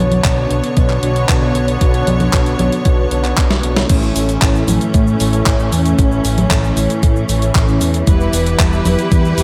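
At a straight 115 BPM in 4/4, this melodramatic, bittersweet italo disco excerpt pairs a thumpy electronic kick with a clean 12-bit drum machine's cabasa, congas, crash, handclaps, hi-hat and medium-tuned snare under gated reverb, while a fat, tube-saturated analog bass, mellow detuned synth brass stabs with chorus and delay, and a clear, smooth symphonic string section holding sustained chords move from Bmadd9 to A at 3.9 s, after a drum fill, and on to Em at 8.1 s, all set in a light digital ambience.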